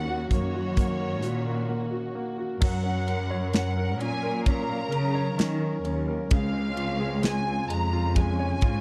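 A punchy, polished acoustic drum kit with bright cymbals sits up front from 0.3 s in this heartfelt, hopeful pop ballad at 65 BPM, where a muted, veiled cello section carries the bass, a clear baby grand piano plays the accompaniment, a lush violin section sings the melody with slapback echo, and a dark, woody symphonic string section holds sustained chords in the background over Ebm7, Gbmaj7 and Dbmaj7, with a brief break at 1.7 s, all in a dry, close 1970s-style studio sound.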